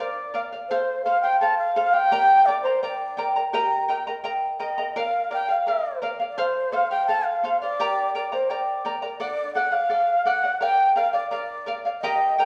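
Bathed in a wet, spacious studio reverb over a small-room ambience, this wistful, earthy Andean folk piece at 85 BPM in 2/4 sets a warm, reedy large quena's airy, vibrato-laced melody above the shimmering double strings of a fingerpicked charango, with both playing throughout and moving through Bb, F, Gm and Eb before shifting to D at 9.2 seconds.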